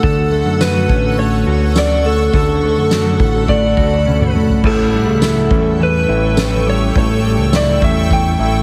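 A slightly broken-up electric slide guitar, played with fingerpicks and trailed by tape echo, carries the melody across this short, melancholic dream pop fragment at 104 BPM in a straight 4/4. Beneath it, a mellow electric guitar picks clean, fingered arpeggios through analog chorus and its own tape echo, while a granular cloud pad holds blurred, evolving chords that drift in on a slow attack and linger in built-in reverb. A fat analog bass, thick with detuned sawtooth and square tones and a moving notch, anchors the low end, and a soft-mallet drum kit with a boomy kick, dark cymbals, tambourine and toms fills a big room. The harmony moves from Dmaj7 to A7 at 4.6 seconds, just after a drum fill from 4.1 seconds, and the kit stops at 8.5 seconds as the cut ends. The whole mix sits in studio reverb with a heavily compressed, radio-like sheen that deepens the hazy mood.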